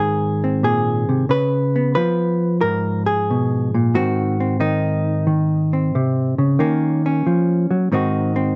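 A short, clean excerpt with light reverb and a rounded top end opens on a lone hollow-body electric jazz guitar, dark, fingered and compressed, sitting up front in the mix. At a relaxed 91 BPM with a swinging eighth-note feel in Ab mixolydian, the guitar moves through Ab, Db7, Ab7 and Ebm7 across its range from Ab2 to Cb5. Cut from a longer piece, this solo jazz passage lasts 8.6 seconds and carries an easy, unhurried mood.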